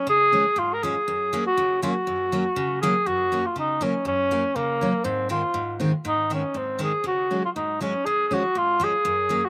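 Alpine folk in a festive, jolly mood, this short excerpt from a longer piece moves in a straight two-beat metre. A tenor saxophone carries the melody from the start, sitting up front with a warm, vintage tone, classical-style phrasing and vibrato, plus a slapback echo. Underneath, a picked steel-string acoustic guitar supplies the accompaniment at a lower level, its fresh strings giving a bright, full-bodied jumbo sound. The harmony travels from C# to F#, later to G# and a C#sus4 before settling back on C#, with the opening phrase returning at 3.1 seconds. Light reverb and an open-air recording free of room sound keep the whole performance close and uncluttered.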